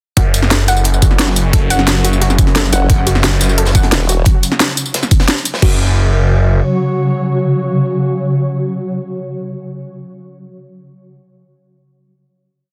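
Dark, futuristic technical drum and bass at 176 BPM, built on a drop from 0.2 seconds where an overdriven, knocking electronic kick and a tight, up-front kit of cracking snares, bright hats, tambourine and crash sit over a very quiet, gritty, looped acoustic breakbeat with edits. Underneath, a thick, swirling phased saw bass plays chopped phrases, joined between 2.7 and 4.2 seconds by a formant-sweep wobble bass with changing wobble speed, while a lo-fi, warbling pluck loops a 6-step arpeggio that drifts against the bar. A tense, swarming granular drone of sustained chords carries on after the beat falls away, holding a final chord from 5.6 seconds in a dense, heavily limited mix with light digital ambience.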